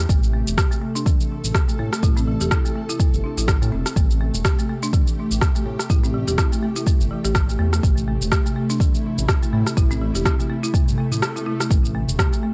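An ethereal, airy pad holding an Am7 chord opens this short afro house excerpt alongside a smooth, dark synth bass, both breathing with sidechain pumping at 124 BPM in 4/4, with a lightly swung sixteenth-note feel in A dorian. Almost at once a deep, up-front electronic kick and a tape-tinged electronic shaker and rim click settle in, giving the groove an earthy, grounded mood. A folk marimba struck with medium hard mallets plays arpeggios on hardwood bars, its woody, rustic tone carrying an analog delay and the same pumping motion. The pad is full-bodied and mellow, with ensemble chorus and built-in reverb, while the bass has a fast attack and a sustained, ring-modulated edge. Near the close, a soft electronic swell enters at 10.9 seconds and a brief break arrives at 11.2 seconds, all within a dry, gritty recording with a cassette tape character.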